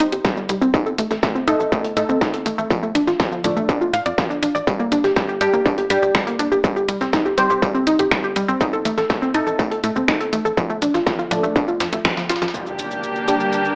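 Dark and melancholic, this melodic techno clip sets a warbling, lo-fi pluck arpeggio and muted, phased chord stabs, both pumping and trailing dub echo, over a punchy sawtooth sequencer bass, a distorted, up-front electronic kick, an overdriven techno kit of finger snaps, hi-hat and shaker, and a gritty, pitched-up breakbeat kit of hi-hat, snare and tambourine sitting in the background, until at 12.5 s intimate sul tasto chamber strings and an electronic impact arrive, joined at 13.1 s by a tense, string-like drone, all heard through a thin AM radio tone in a moderate digital room.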